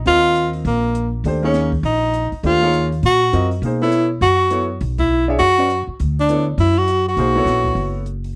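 A breathy tenor saxophone leads this brief modal jazz excerpt, its vibrato and scooped notes up front with a slapback echo, setting a searching, spiritual mood at a brisk, swinging 203 BPM in 4/4. A woody, thumpy upright bass on gut strings sits prominently beneath. A clear concert grand piano with deep bass supplies the accompaniment over Eb7sus2 moving to Bm9, while a dark, compact cocktail drum kit with a high-tuned snare and punchy kick stays in the background. The band hits an accent at 5.0 seconds, and the sound is a dry, close 1970s-style studio recording with light reverb.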